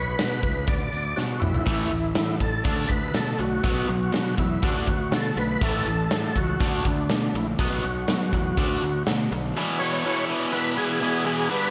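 A straight 4/4 groove at 122 BPM drives this sunny, swaggering classic rock clip, where a gritty, overdriven tonewheel organ carries the melody with chorus vibrato, key click, a slow rotary speaker and slapback echo over a punchy fuzz bass and a big, up-front acoustic drum kit with a medium-tuned snare, toms and a punchy kick, whose fill at 1.2 s ushers in a bright, double-tracked cranked stack guitar riff with its own slapback at 1.7 s, before a very quiet second organ adds thick sustained chords on an E chord from 9.6 s, all set in a lush hall reverb for a big arena sound.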